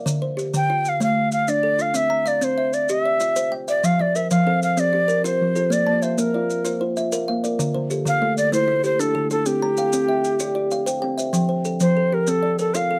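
A dry, woody kalimba with a short thumbnail pluck opens this rippling piece of southern African traditional music, cycling mbira-style arpeggios in 12/8 over a Dm–C–F–Bb progression, joined almost at once by grainy, mellow maracas and an airy cedar flute carrying an up-front melody with crisp chiff and vibrato, while a second, darker kalimba with a hollow, ringing fingertip tone adds softer arpeggios from 4.0 to 11.7 seconds, all set in light reverb.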